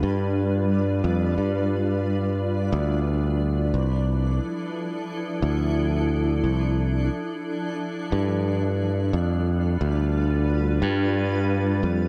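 A granular cloud pad and a fingered electric bass begin together, opening this spacious, deep ambient dub excerpt in a swung 4/4. The pad holds sustained chords with a slow attack and long release, its blurred, evolving texture drifting through its own built-in reverb. Beneath it, the bass sits up front with a bright, growly, punchy tone, its tube saturation adding bite to a low register between C2 and G2. The harmony moves from G7 to Dmadd9 at 2.7 seconds and returns to G7 at 8.1 seconds. A light room reverb surrounds the mix, while both parts carry on until the cut at 12.1 seconds.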